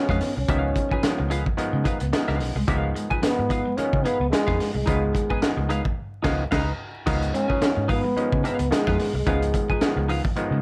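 Funk at 109 BPM in 4/4, this energetic, funky excerpt sits in Db mixolydian with a light 16th-note swing and opens on a Db9 chord. A breathy, distant trombone carries the melody in a whispered, intimate jazz style, while an overdriven, stringy clav punches out stabs. A clean, compressed semi-hollow guitar with subtle chorus plays accompaniment, and a very quiet, slightly broken-up electric guitar picks a low riff underneath. A foam-muted vintage bass gives a round, punchy bottom, and the crunchy breakbeat kit sits up front with a high-tuned snare, tight kick and gritty, saturated tone under a rolled-off top. The band hits an accent from 6.0 s, leading into a new section at 7.1 s, with light reverb and a haze of vinyl crackle over the whole recording.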